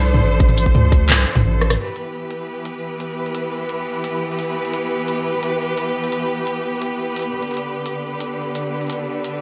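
A half-time drum and bass groove at 173 BPM in 4/4 drives this tense, dark excerpt in E phrygian, cut from a longer piece. It opens on a drop, with a deep, saturated sub bass and a tight electronic kick pushing up front, the kick playing from 0.4 to 1.4 seconds before a brief break and a drum fill at 1.6 seconds; the sub bass stops at 1.8 seconds. The crisp, tape-touched drum kit carries on through the rest of the recording, mixing handclaps, hi-hat, rim click, tambourine and toms, with low-pass filtering on the hats, toms, percussion and snare and a gated reverb on the kit. Throughout, a clear, lush studio cello section holds bowed chords with vibrato, pumped by sidechain compression, moving from Dm to Em at 1.8 seconds and on to G near the end. A moderate plate reverb and bright 1980s-style digital sheen frame the whole mix.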